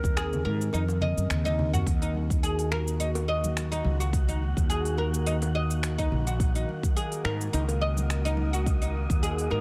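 This dry excerpt of organic downtempo has a warm, earthy mood and a gently swung groove. A deep, layered electronic kick and a produced afro-pop kit of finger snaps, smooth hats, shaker and toms set the pulse, while very quiet congas and bongos add soft-handed, ringing hand percussion. Up front, a dark, round fretless electric bass carries a lush chorus. A woody, double-stringed oud plays plectrum-plucked arpeggios through tape echo, over a warbling, nostalgic lo-fi pad of detuned sustained chords that pumps gently behind the mix. A mellow cedar flute with an airy chiff and delay sounds a brief phrase that ends by 1.3 seconds; the kick drops out from 0.7 seconds, and a drum fill leads into the next section. From 2.9 seconds a breathy, wind-like tuned noise texture drifts in far in the background.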